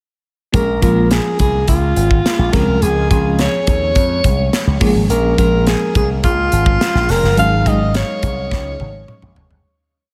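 A crisp sixteenth-note studio groove in straight 4/4 drives this short, slick and nocturnal piece of polished 1980s jazz-funk pop, with a punchy kick and high-tuned snare sitting up front alongside hi-hat and toms. Slap bass through an envelope filter runs an agile, syncopated line that sounds bright and direct from the very start. A bell-like FM electric piano, sparkling yet mellow, pushes drop-2 chords through tremolo and ensemble chorus, moving from Bbm7 to Dbmaj7 and back before settling on Ab7sus4. Over this, a breathy alto saxophone with soft attack and vibrato sings an intimate, motif-based jazz melody in song-like phrases. The whole mix is soaked in a huge, dreamy ambient reverb, and it begins fading at 7.4 seconds while a drum fill and a short electric piano fill close the piece.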